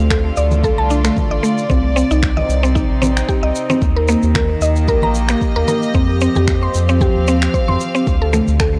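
A dry, gritty recording with transformer saturation carries this earthy, meditative organic downtempo excerpt, where a woody, bright mallet-like synth pluck spins chorused, cassette-tape-tinged arpeggios through analog delay over an up-front, round analog bass with sidechain pumping, a distant, floating studio string section holds soft-attack sustained chords that also pump with the sidechain, and a deep electronic kick drum joins electronic finger snaps, shaker and congas, re-recorded in a small room, for a gently swung pulse.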